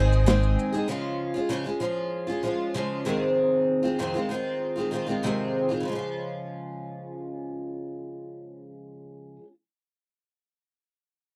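This heartfelt, carefree acoustic pop excerpt opens on a woody, thumpy pizzicato upright bass note that stops by 0.5 s, alongside a lush, very quiet bowed string section with vibrato and a smooth, dark shaker and snare that enters at 0.1 s, both of which drop out by 0.9 s to leave a warm, double-tracked picked steel-string guitar up front, carrying the chords in a dry, close 1970s-style studio sound with light reverb.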